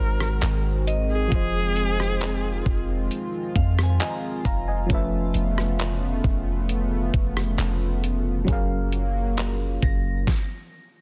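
Contemporary R&B with a longing, moody feel, where a clear, focused viola with vibrato and delay sings briefly until 2.8 s over a mellow FM electric piano, a shimmering, retro pulse-width pad pumping with sidechain, a deep, boomy 808-style bass and a thumpy, tape-warm 8-bit drum machine with a softly clipped snare, while a pure, chorused synth bell glints in the background; most parts drop out at 10.3 s and the drums at 10.5 s, leaving the bell to ring until 11.0 s.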